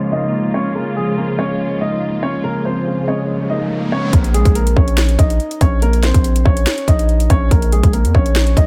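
Hard-hitting and melancholic, this half-time trap excerpt opens on a dark, mellow baby grand piano melody with tape echo and long sustain, over a clean, chorused tine electric piano up front and soft, bowed studio strings with vibrato, all filtered. An electronic riser at 3.3 seconds leads into 4.1 seconds, where the electric piano and strings give way to a saturated, aggressive 808-style bass with a noise layer and a trap drum kit of hard-clipped kick, sharp snare and metallic hats, both up front, while the piano carries on. The Bbm7 harmony settles to Bbm, and the mix sits in a digital ambience.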